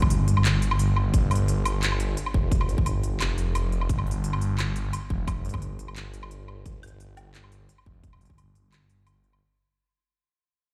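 A thick, swirling detuned saw bass sits up front, its saturated tone and phaser giving the low end a restless, churning edge as it holds sustained notes with a fast attack. This is a dark, tense slice of half-time drum and bass, cut from a longer piece and fading out across its full length. A tight, tape-warm electronic kick punches through until 8.4 s, layered with a drum kit of handclaps, crisp hi-hats and woodblock set in a small room ambience, all riding a gently swung half-time feel. A very quiet electronic downlifter sinks beneath the opening, gone by 1.1 s. The whole mix sounds as if played on a big sound system in a bare room, washed in large studio reverb.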